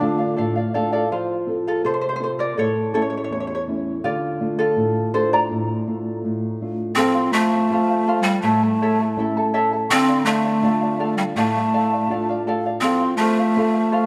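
In a straight 2/4 at 82 BPM, this wistful yet festive Andean folk excerpt in D minor sets a shimmering, fingerpicked charango and a dark, thumb-plucked nylon-string guitar up front, with the charango taking a solo from 1.1 to 7.0 seconds before breathy, bright pan pipes with vibrato and a crisp chiff carry the melody from 7.0 seconds over a distant, mellow, end-blown quena second line, set in a wet concert-hall reverb.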